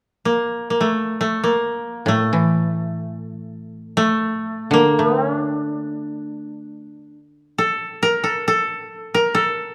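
A dark recording in a moderate recital-hall reverb frames this austere, still passage of traditional Japanese chamber music in free time, cut from a longer piece and tuned to A4 = 444 Hz. A fingerpicked koto carries the melody from 0.3 s with a woody, up-front tone that sits close and dry. A second, mellow koto joins at 2.1 s with a lower accompaniment and stops at 7.8 s, leaving the melody koto alone for the closing moments.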